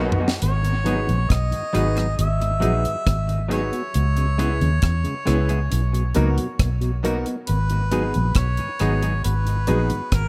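This roots reggae fragment moves at a slow 68 BPM in straight 4/4, opening with a short drum fill before the dry, up-front kit settles in with hi-hat, tight kick, rim click, high-tuned snare and toms, touched by analog delay. Beneath it, a dark, foam-muted fingered electric bass sits prominently, round and amped, and is the loudest part in the mix. In the background, a semi-hollow electric guitar with a clean, compressed tone passes through spring reverb and tape echo, while a tonewheel organ with key click turns through a slow rotary speaker and analog delay. A clear concert grand piano adds polished stabs with audible action noise, and at 0.4 seconds a distant, roomy harmonica takes the melody, its pop-style line washed in tape echo. Over a G-sharp minor progression of G#m7, C#m7 and Bmaj7, the echo-heavy mix feels hypnotic and meditative.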